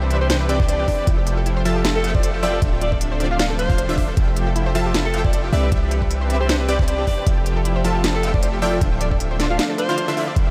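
Future bass at 155 BPM in a half-time, lightly swung feel and F lydian, euphoric and playful, cut from a longer piece: a breathy, whispered alto saxophone carries the pop-style melody with light vibrato and diffuse delay over lush Cmaj9, Fmaj9 and Dm9 chords. Around it sit a punchy, detuned supersaw stab riff, two bright sawtooth pluck arpeggios (one very quiet with a phaser, the other warbling and vintage in the background with a diffuse delay), and soft, sul tasto studio strings sustaining chords far back. A deep, boomy 808-style bass and an up-front, knocking electronic kick anchor the groove with a tape-warm trap kit of crisp hats and sharp snare, while sidechain pumping moves the bass, stab, strings, saxophone and louder pluck, all bathed in a dreamy, huge ambient reverb.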